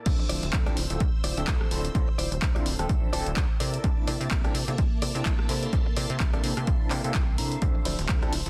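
A punchy, tape-warm electronic kick sits up front in this funky, groovy filtered disco house excerpt at 127 BPM in D minor, joined by a plucky sawtooth analog bass, a barky overdriven tine electric piano with fast tremolo and 12-bit grit, a bright, clean, direct-recorded electric guitar riff that breaks into a fill at 6.7 seconds, an analog drum machine's handclaps, hats, ride, crash and rim clicks, its hats and cymbals pumping with the sidechain, and a lush phased string machine in the background, all but the kick and drum machine breathing with sidechain pumping and a low-pass filter over Dm9 and C13 chords.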